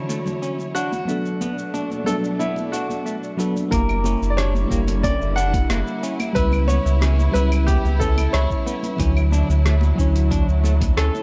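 A mellow FM electric piano with chorus and digital delay opens this wistful, relaxed sunset chillout excerpt at 91 BPM, over lush, woody studio strings, a clean semi-hollow electric guitar playing arpeggios with warbly pitch drift, a gritty sampler-style kit of claves, hi-hat, rim click and shaker, and very quiet vintage congas. A brilliant grand piano carries the melody through tape echo from 0.7 s, and at 3.7 s a round, up-front sine sub bass and a thumpy electronic kick join as the chords move from Dmaj9 and Bm7 to F#7b9b13 and C#m7b5 before returning to Dmaj9. The dark production sits in light digital ambience.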